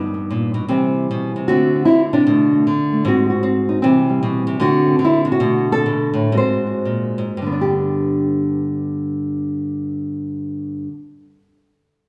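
Solo jazz on nylon-string guitar, relaxed and swinging in G major, with a rubato feel drifting between 105 and 157 BPM. The small, thumb-plucked tone sits up front with audible finger squeak, while a wet recital-hall reverb blooms around it as the guitar cycles through Cmaj7, D7, Bm7 and Ab7. The playing slows from 3.8 to 7.4 seconds before settling on a G chord, and the piece is cut from a longer performance.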